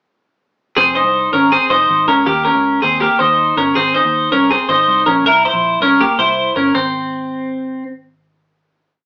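A twelve-string electric guitar and a muted electric bass start together at 0.8 seconds in this brief, youthful and breezy jangly indie pop piece in Ab major at 161 BPM, the guitar up front with a bright, twangy, ringing arpeggio figure doubled in sixths over a Fm, Eb, Ab and C7 verse. Beneath it, the foam-muted bass plays a dark, round, melodic line much lower in the mix, and it carries on alone under the final Ab chord after the guitar stops at 7.8 seconds, until 9.1 seconds. The band sounds like it is playing live in one room, with a wet but short reverb and a small-speaker character.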